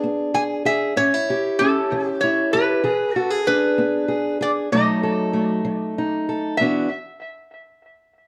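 A dark, close-sounding small room frames this short cut from a longer acoustic country blues piece, with both guitars sitting up front. A boxy parlour steel-string guitar, fingerpicked in the low and middle register, carries the accompaniment from the first moment, its finger squeaks audible on the strings. At 0.3 seconds a metal-body resonator slide guitar, played with fingerpicks, enters above it with a bright, nasal, metallic melody, given extra space by plate reverb and analog delay. The swaggering, gritty feel rolls along in a straight 12/8, moving through E7, A7 and B7 before settling onto an Esus2 at 6.6 seconds as a new section begins. The warm, intimate duo sound keeps the focus on the slide's biting voice against the woody fingerpicking of the accompaniment.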